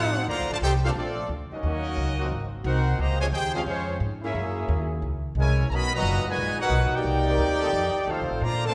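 Big band swing at 177 BPM in 4/4 with a swung eighth-note feel, this energetic, joyful passage is cut from a longer piece. A tight, clear trumpet section carries the melody up front with light vibrato. Beneath it, a warm trombone section plays a second line over a woody pizzicato upright bass, and a second trombone section enters in the background at 0.8 s with sustained chords moving from Bbmaj9 through Dbmaj7 and Bmaj7 to F7, all set in the lush, wet reverb of a church or concert hall.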